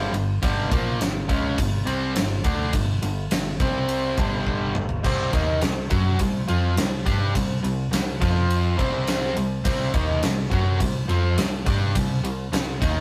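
A rough rehearsal-room recording with tube saturation and moderate ambience carries this driving, menacing hard rock excerpt, where two picked overdriven electric guitars, one bright and one dark and up front with spring reverb, play riffs over a round, hollow-body short-scale fingered electric bass and a gated 80s drum kit with a fat snare, tight kick and bright cymbals that breaks into a fill at 4.5 seconds.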